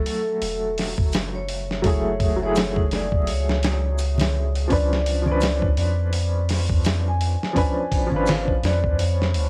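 A woody, up-front upright piano, roughened by 12-bit sampler grit, tremolo and cassette wear under a filter sweep, opens this brooding, hypnotic trip hop fragment alongside a deep, round dub sub bass as the harmony moves from F#m9 to C#7b9. A compressed, sampler-style drum kit with a thumpy kick and medium-tuned snare sits up front in a swung groove, while mellow soft-mallet vibraphone carries the melody through dub echo, with slow motor vibrato and an airy, metallic ring. Bright, hard-handed maracas and congas stay in the background from 1.1 to 8.4 seconds, and light reverb with vinyl crackle gives the home cassette recording a worn haze.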